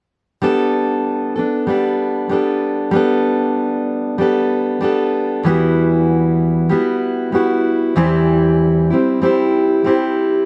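Pop at 95 BPM in G major, easy-going and carefree, this short excerpt features a lone fingerpicked steel-string acoustic guitar playing accompaniment from 0.4 to 10.5 seconds, its full-bodied dreadnought tone sitting up front. The chords move from Gadd9 to Emadd9 at 5.5 seconds and then to C/E, framed by light reverb in a dark, warm production.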